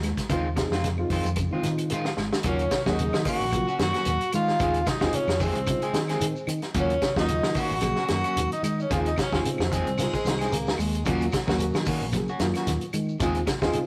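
A driving, funky afrobeat groove at 112 BPM in 4/4, with a light swing on the sixteenths, is carried by a warm, up-front soul drum kit with tight kick, medium-tuned snare and hi-hat, a dark, round fingered bass, grainy shekere in the background and very quiet woody claves. Around them, a very quiet, twangy clean electric guitar plays arpeggios, while a second guitar at the edge of break-up adds slightly broken-up picked stabs and a reedy, worn electric piano, slightly out of tune, shimmers with fast tremolo through its built-in speakers. After a drum fill at 2.2 seconds, a clear tenor saxophone takes the smooth, lightly vibrato melody, shadowed by an airy clay ocarina high above it in the background. At 10.0 seconds a raspy, growling baritone saxophone slips in with a brief second line. The harmony sways between Ebm7 and Dbmaj7 in Eb dorian, and the whole recording sits in a moderate stone room with the rough, saturated feel of a rehearsal-room recording, cut from a longer piece.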